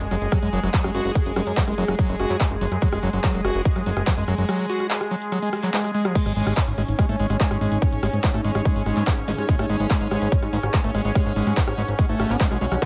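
Psychedelic trance at 144 BPM, driving and alien, cut from a longer piece where a punchy, up-front electronic kick and a big-room dance drum kit with metallic hats, claps, rim clicks and cymbals push under a fat, detuned analog bass and a squelchy, distorted acid bass riff with dub echo and sidechain pumping. A bubbling stepped-filter texture holds sustained chords over F#sus2 then G#5, carrying chorus and 12-bit sampler grit, and an ethereal, warbling pad drifts in the background from 6.9 s. A very quiet zap flickers at 9.3 s, and a nasal vowel-sweep wobble bass surfaces up front in the final moment at 12.8 s.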